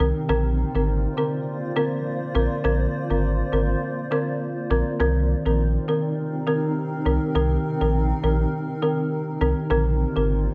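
A round, sine-like sub bass, a woody folk marimba struck with medium mallets and a cloudy granular pad all sound together from the opening of this short dancehall excerpt. The mood is tough and hypnotic, moving at 102 BPM in 4/4 with a 56% swing on the sixteenths, and the tuning sits at A4 = 438 Hz. The sub bass is deep and mellow with a fast attack and long sustain, sitting up front alongside the dry, rustic marimba, whose hardwood bars have a vintage, band-limited tone. Behind them, the pad slowly blooms into blurred, wave-folded chords that evolve and fade with a long release into their own built-in reverb. The harmony moves from Bbadd9 to Cm7 at 5.0 seconds and returns to Bbadd9 near the end, and the marimba stops at 10.3 seconds, just before the bass and pad. A light studio reverb gives the whole mix a modest sense of room.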